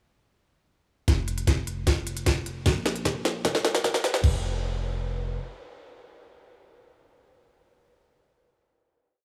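Bright and lush, this brief future bass piece moves at 152 BPM in 4/4 with a half-time feel, starting as a build-up from 1.1 seconds with a drum fill and a filter sweep. An electronic kick drum gives a knocking, half-time pulse, while a trap drum kit sits up front with a sharp snare, crisp closed hi-hats in rolls, and a crash cymbal. Both drum parts carry a tape-warm character and drop out at 4.3 seconds. A deep, boomy 808-style bass with a sine tone, a noise layer and a fast, decaying attack ranges from Eb1 to Bb1, follows the chord rhythm and pumps against the sidechain. The bass holds on into the final note section that starts at 4.2 seconds, and the mix is set in light digital reverb with a small room ambience.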